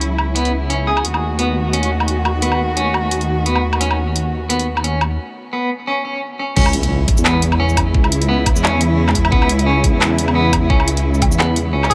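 Heavy and dark, this half-time drum and bass cut in C# minor moves at 174 BPM with a swung sixteenth-note feel, shifting from C#m to D#dim. A studio cello section holds soft-edged, bowed sul tasto chords with vibrato, pumping under a sidechain, while a deep, rumbling detuned saw bass with tube saturation sits up front. The layered drum kit carries bright hats, handclaps, shaker, woodblock and crash, all dulled by low-pass filtering and treated with a filter sweep through the opening. A clean, picked electric guitar enters at 0.4 seconds with arpeggios colored by tremolo and digital delay. After a break at 5.2 seconds, the drop lands at 6.6 seconds, where a knocking electronic kick joins and an impact sounds in the background, all under light reverb.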